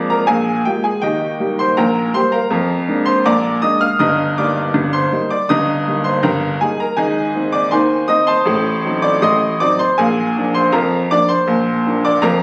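An upright piano opens this ragtime excerpt alone, sounding on a Bb7 chord before settling into Eb major at 80 BPM in a straight 2/4. The mood is jaunty and playful, and the solo instrument carries the whole 12.4 seconds, ranging from G1 up to F6. Its tone is warm, woody and slightly detuned, with a vintage character, a smooth sound and long sustain, placed up front in the mix. The harmony moves from Eb through Ab and an Adim7 before turning back to Bb7 near 10.0 seconds, leaving the phrase poised to continue. Captured on a phone in the room, the sound carries light reverb and the ambience of a club, and the passage is cut from a longer piece.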